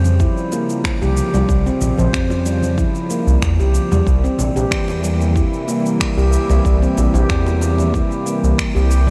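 Set in a light reverb with a digital ambience, this meditative organic downtempo excerpt moves at 93 BPM in a straight 4/4, shifting from Db to C7 at 4.1 seconds. A ringing, bright stainless-steel handpan plays up-front arpeggios through a diffuse ambient delay over a mellow, full-bodied analog pad, whose sustained chords carry chorus and sidechain pumping. A smooth, saturated synth bass sits prominently beneath, while very quiet acoustic congas and bongos, an electronic shaker with finger snaps, and a deep layered electronic kick, the last two in studio reverb, fill out the groove.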